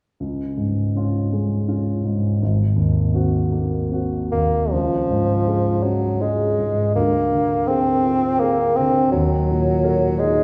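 Warm and lyrical, this fragment of a romantic classical duo unfolds in a flowing triple metre with a rubato feel that lets the phrases breathe. A dark-toned grand piano opens alone at 0.2 seconds, laying down an accompaniment that spans its lower and middle registers, with harmonies moving from Db to Ab9. At 4.3 seconds the bassoon enters with the melody, its mellow voice carrying a light vibrato in a classical style as it sings in a compact middle range. As the second section begins, the harmony shifts through Db, Bb7/D and Ebm7, giving the line a gently searching quality. Both instruments sit up front in the blend, yet a generous recital hall reverb places the listener further back in the room, wrapping the duo in a soft, resonant glow.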